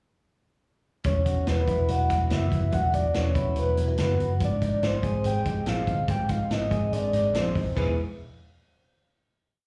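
A brisk indie backbeat at 143 BPM in straight 4/4 drives this short, complete piece of jangly indie pop, its mood nostalgic and youthful. The vintage drum kit, entering at 1.0 seconds, sounds saturated and gritty with dark cymbals, a tight kick and a medium-tuned snare, its top rolled off, while the foam-muted picked bass underneath is round and punchy, pushing steady eighth notes low in its range. A bright, direct-recorded clean electric guitar plays a fingerpicked roll pattern of compressed arpeggios touched with slapback echo. Up front, a soft octave-layered synth lead carries hook phrases with a sub octave beneath, its sustained tone thickened by chorus, vibrato and slapback echo. The harmony moves from Esus2 to G# before settling on a final E chord at 7.8 seconds, all heard through a venue's PA with club reverb, as if caught at a live gig.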